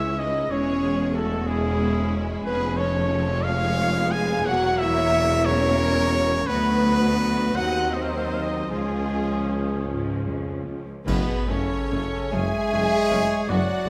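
A slow, melancholic and elegiac romantic orchestral passage in 6/8 with a rubato feel opens with bright, intense violins carrying the melody over darker, woody second violins, smooth violas, mellow French horn chords, clear trumpet stabs, and a bass of cellos, a mellow tuba and rich double basses, joined at 0.2 seconds by an airy, hollow flute line, before dark cymbals and bass drum mark an accent at 11.1 seconds as the harmony turns to F#m and a solo oboe enters at 12.3 seconds, all set in a moderate scoring-stage reverb.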